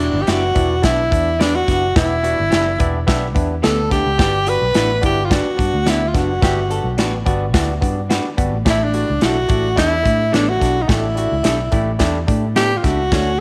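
Light reverb and a small-room ambience frame this joyful, uplifting excerpt of uptempo 1960s-style soul at 108 BPM in straight 4/4, cut from a longer piece and moving through Em7, Gmaj7 and A7sus4. A breathy, close-miked tenor saxophone carries the melody up front with vibrato, while an airy acoustic drum kit with a punchy kick and a medium-tuned snare enters at 0.3 s and a round, foam-muted fingered bass holds the low end. Around them sit a barky tine electric piano through a combo amp, a dark hollow-body jazz guitar riff in the background, faint clean stabs from a semi-hollow electric guitar, and a very quiet vibraphone with soft mallets and slow motor vibrato ringing a mellow second line above.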